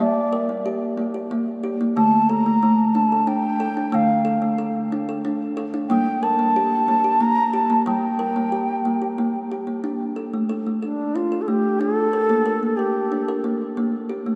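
Meditative world music in G minor, this hypnotic excerpt moves at 92 BPM in an unhurried 3/4 with a straight feel. A breathy, mellow bansuri carries the melody from the start, its bamboo tone soft in attack, touched with vibrato and rolled-off in the highs, sitting up front until it stops at 13.4 seconds. Beneath it, a kalimba plays woody, hollow-box arpeggios with short thumbnail plucks and a vintage, band-limited character, continuing until 14.4 seconds. Both instruments carry a diffuse ambient delay and sit in a vast, echoing cathedral reverb that lets every note hang in the air. The harmony sways gently between G minor and a D power chord, with a new passage arriving at 9.8 seconds before the chords fall away at the close.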